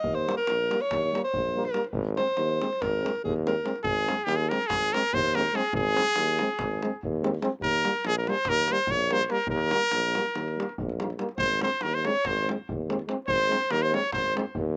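Wild and virtuosic, this cut from a longer Balkan brass band piece races along in 9/8 at 286 BPM, counted in eighths, in Ab major, as a clear, close-miked alto saxophone with slapback echo takes an opening solo over a vintage tuba bass and a deep, band-limited davul that also carries slapback echo, before a brilliant, punchy trumpet seizes the melody at 3.8 seconds, a mellow euphonium and a distant trombone with light vibrato fill in the background, and the saxophone returns at 11.4 seconds, the whole band captured dry in open outdoor air.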